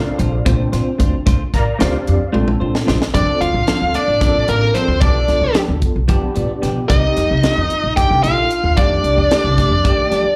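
Electric jazz fusion in a bright, slick 7/8 at 223 BPM in Bb major, heard live through a club PA, where a barky, gritty tine electric piano with fast tremolo, chorus and slapback echo and background stabs from a clean, compressed electric guitar ride over woody pizzicato upright bass and a crisp, punchy drum kit with a high-tuned snare, until a drum fill at 2.3 seconds ushers in, at 3.1 seconds, a distorted, bluesy lead guitar melody joined by a clear, vibrato-tinged tenor saxophone second line over chords moving from Bbmaj7 through G7/B and Cm9 to F13, with an electric piano fill at 6.1 seconds in this cut from a longer piece.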